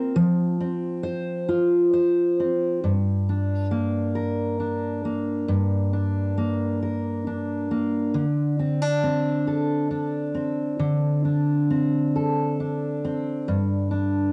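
A tender, heartfelt pop piece in a straight 6/8, carried entirely by a solo fingerpicked steel-string acoustic guitar. The jumbo-bodied instrument sounds full-bodied and up front, ranging from low G2 up to C5, with a gentle cassette-tape coloring that gives it the intimacy of a home recording. A brief opening passage gives way at 2.8 seconds to a longer section that moves through a G minor chord before settling onto open fifth voicings at 8.1 and 13.5 seconds. A moderate studio reverb adds a touch of space around the strings, keeping the sound close and personal. This is a short fragment cut from a longer piece, lasting just over 14 seconds.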